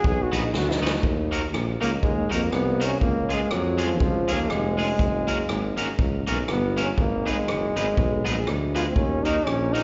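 A swung ska groove bounces along in this upbeat fragment of a longer piece, driven by a roomy but up-front big-band drum kit with boomy kick, rim clicks, hi-hat and snare, and a warm tuba with light vibrato holding down the bass. A clear trombone takes the solo lead, trailed by tape and slapback echo, while a twangy, slightly broken-up electric guitar joins at 0.3 seconds with its own slapback. A drum fill lands just before the second pass at 1.0 seconds, and the mix comes across as a live gig through the venue's PA, with recital-hall reverb and a muffled top end.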